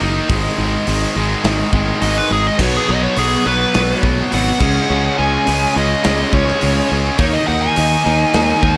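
Driving and menacing, this hard rock excerpt in G# minor at 104 BPM stacks two bright, high-gain distorted guitar riffs in the background over a growly, punchy fingered bass up front, a very quiet gritty organ holding sustained chords through a slow rotary speaker, and a big acoustic drum kit with bright cymbals and a punchy kick in a stone room entering at 0.3 seconds, before a nasal, overdriven lead guitar with a parked wah and slapback echo takes the melody from 2.0 seconds and a double-tracked distorted guitar riff joins at 2.6 seconds, all under light reverb as the chords move from G#5 through B5 and C#sus2 to D#5.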